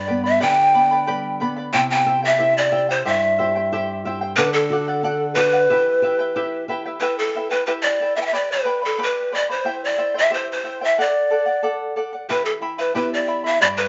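Played live by a band in one room with moderate studio reverb and a top end capped at 7.6 kHz, this melancholic, earthy Andean folk excerpt in E minor moves at 91 BPM in a straight 2/4, with large cane pan pipes carrying the melody up front, breathy and unsteady, with vibrato, a crisp, chiffy attack and lifted highs, over a bright, shimmering fingerpicked charango with double strings and a small, warm fingerpicked nylon-string guitar that drops out at 7.0 seconds and returns at 12.3 seconds, all cycling through G, C, D and Em.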